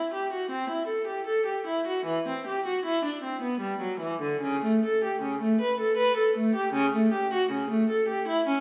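A lone bowed viola with a gut-string, period-style sound carries this radiant, serene baroque-style suite movement, its reedy voice and smooth top ranging from C#3 to B4. The player moves in a flexible, rubato three-beat metre, sitting up front in a wet recital-hall reverb with a hint of small-room ambience. The 8.6-second passage is cut from a longer piece.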